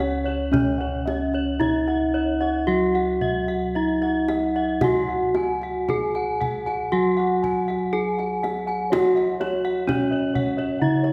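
This short passage of Javanese gamelan, cut from a longer piece, opens with the full ensemble sounding together from the first moment, at a slow 56-66 BPM in a straight four. The lead is a dark, smooth bronze metallophone struck with horn mallets, set up front and carrying the melody in the middle register. Above it, a second metallophone in paired tuning plays ringing arpeggios with an airy, shimmering beat between its pitches, joined in the same high register by round, beating bossed gongs. Lower down, another set of bossed gongs supplies a boxy, warm bass line. The kendang keeps time with tight, soft-handed drumming that has a small-room character. The ensemble sits in a moderate concert-hall reverb, giving the bright metallic tones a ceremonial glow through the whole 11.1 seconds.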